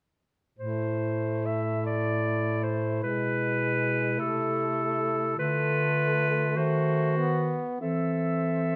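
Heard in light reverb, this melancholic, solemn classical fragment for single-reed quartet moves in a rubato, unevenly pulsed 6/8, with a bright, vintage-toned clarinet singing the melody up front over a second clarinet's supporting line, a tenor saxophone's warm, vibrato-tinged accompaniment and a dark, smooth-topped bass clarinet anchoring the low end, the harmony darkening through a diminished chord near 6.6 seconds before settling back home.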